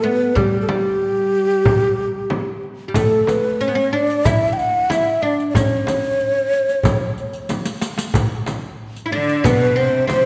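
A moderate concert-hall reverb surrounds this short excerpt from a longer Turkish makam ensemble piece, soulful and melancholic in mood, moving at 92 BPM in a straight 4/4. Up front and close-miked, a breathy, mellow ney carries the melody with vibrato and tongued, expressive phrasing, while a woody, fretless oud, plectrum-plucked on double strings, supports it with a second line beneath. A clay-shelled darbuka played with hard hands sets the pulse in a live room, joined almost immediately by a large, deep frame drum, and a riq with dark jingles, close and dry, enters at 3.0 seconds. A drum fill at 7.5 seconds leads into a new section, and at 9.1 seconds a distant, bright symphonic cello section arrives, bowed with light vibrato and adding an intense low line beneath the ney.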